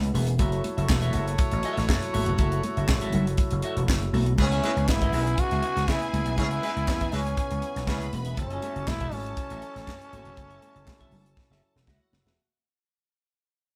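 Glamorous and driving, this 120 BPM disco excerpt rides a tight funk drum kit with bright cymbals, handclaps and a high-tuned snare alongside a punchy vintage slap bass up front, with high-tuned congas, a clean picked electric guitar through phaser and a fat, lightly overdriven tonewheel organ on slow rotary speaker in the background, clear horn stabs until 8.1 s, and from 4.4 s a raspy, growling trombone melody over a lush, distant string line as the band fades out, ending on a drum fill at 11.4 s, all in a live room with moderate reverb over F#m7 and C#m7 chords.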